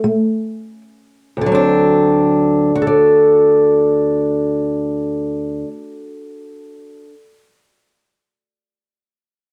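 This is a dry, intimate recording with close, detailed microphones. It is a short cut from a longer acoustic country blues performance in a straight 12/8, with a mood that is rollicking yet soulful. A single fingerpicked guitar carries the whole piece: an old ladder-braced instrument with a dark, boxy, woody tone and the dull edge of aged strings, sitting up front in the sound. The opening moment is unaccompanied by any chord and slows down before the music settles at 1.4 seconds onto a D7 that colours the rest of the passage. The guitar ranges from low D2 bass notes up to D5, giving the lone player a full, self-contained sound until the cut ends at 7.1 seconds.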